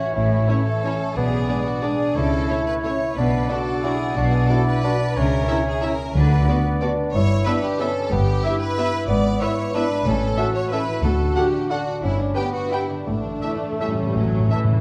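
A bowed double bass section, warm and smooth-topped, anchors this sweeping, festive orchestral passage, pairing with a clear, lush cello section that sounds distant in the bass from 0.2 seconds. In a brisk triple metre at 156-200 BPM with a rubato feel, a rich, close violin section carries the melody in the background, while a second violin section, an oboe and a pure, hollow flute trace second lines. A solo bassoon and a very quiet viola section fill out the accompaniment, and a mellow French horn section holds soft-edged sustained chords. A thumb-plucked concert harp rings out arpeggios, and the chords move from A through diminished passing harmonies and Bm to a cadence of E7/G#, A, D, G and back to A. Timpani with calf heads and medium mallets sound close and dry, striking briefly at 6.2 and 10.1 seconds before a fill from 13.1 seconds. The dark production sits in a wet scoring-stage reverb, and the passage is cut from a longer piece.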